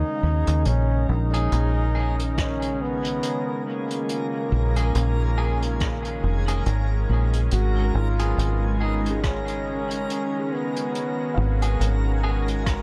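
Ambient dub at a slow 70 BPM in 4/4 with a swung sixteenth-note feel, this hazy, deep excerpt sits in G# dorian and moves from a G#7 chord to A#m7 and then to G#m7 at 7.5 seconds. A mellow trombone carries the solo melody with vibrato and a soft attack, its lines trailing off into dub echo, while a warbling, detuned analog pad holds sustained chords beneath it through a chorus effect. Up front, a dark, round, foam-muted fingered electric bass with tube saturation anchors the low end. A reversed, granular texture swells with dreamy, bright shimmer, and a twangy, scooped clean electric guitar adds picked stabs in the background, also fed through dub echo. A vintage brush kit with a rolled-off top plays hi-hat and rim click from 0.5 seconds, an electronic soft kick joins at 2.4 seconds, and a very quiet felt-muted upright piano, boxy with audible action noise, returns with arpeggios at 7.8 seconds. 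Light reverb and studio ambience round out the recording.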